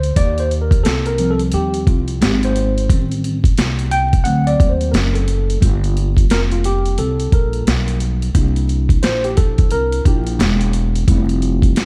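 Cool and mellow, this jazz-hop cut from a longer piece moves with a swung hip hop feel in 4/4. A clean tine electric piano, heard through its built-in speakers and bathed in lush chorus, carries a solo across both passes of the same section from start to finish, turning over chords such as Am7b5, D7, Gm7, C7 and Fmaj9. Underneath, a woody pizzicato upright bass with gut strings sits up front. The boom bap sampler-style drum kit is compressed, pitched down and gritty, with a thumpy kick, a high-tuned snare and hi-hat, re-recorded in a large room yet kept close. The production is dark and warm, with little reverb and a layer of vinyl crackle.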